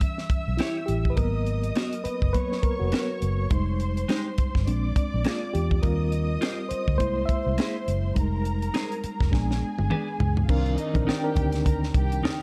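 Lush and romantic, this 1970s-style soul excerpt at 103 BPM with a swung sixteenth feel puts a reedy electric piano with fast tremolo out front as the soloist until 10.5 seconds, over a tight, dry funk drum kit that plays a fill from 9.3 seconds, a round, punchy muted fingered bass, a clean chorused electric guitar riff and a smooth bowed violin section trailing tape echo, while low-tuned congas join at 10.5 seconds, all inside a dark studio ambience.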